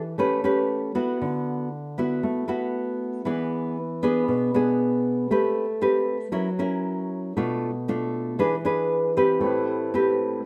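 Smooth and melancholic, this brief bossa nova excerpt in A minor at 117 BPM sets an up-front, fingerpicked nylon-string guitar with a warm classical tone against light reverb as it moves through A9, D69, E7 and Am9 changes, before a clear concert grand piano with a deep, natural bass joins the accompaniment at 9.4 seconds for the return to Am9.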